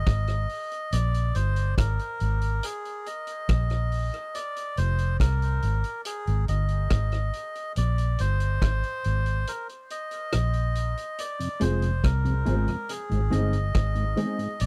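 A dry, close 1970s-style studio sound frames this meditative, deep dub reggae excerpt, carried by a dark, foam-muted electric bass up front and a vintage drum kit with a punchy kick, rim click and hi-hat. A reedy, breathy melodica sings the melody through dub echo over chords moving between Ab and Fm. Near 11.4 seconds a mellow tonewheel organ with slow rotary swirl and chorus vibrato joins, followed at 11.6 seconds by woody upright piano stabs with audible action noise, both touched by the same dub echo.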